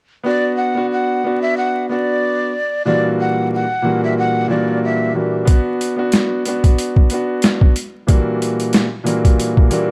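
Boom-bap hip-hop with a dark, gritty mood, cut from a longer piece and dusted with vinyl crackle and a light small-room reverb, built on a mellow, vintage baby grand piano with long sustain and a cassette-tape tint that cycles between Bm and F#7b9b13/A#. A breathy jazz flute carries the melody until 5.1 seconds, its soft attack, vibrato and unsteady playing giving it a fragile, airy edge. At 5.5 seconds a compressed, pitched-down sampler-style drum kit arrives up front, overdriven, with a thumpy kick, a high-tuned snare and hi-hat.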